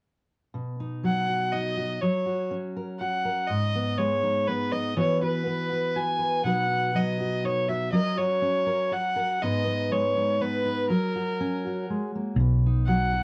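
This folk excerpt in waltz time has a pastoral, peaceful mood. A fingerpicked steel-string dreadnought acoustic guitar opens at 0.5 seconds with a full-bodied accompaniment. At 1.1 seconds a single bowed fiddle takes the melody, with a reedy, gut-string tone. A round, dark hollow-body electric bass, played with the fingers through an amp, arrives only at 12.4 seconds, sitting up front on a low B as the chords return home. Light reverb and the sound of worn old cassette tape, with its warbly pitch drift, give the recording a gently aged, hazy character.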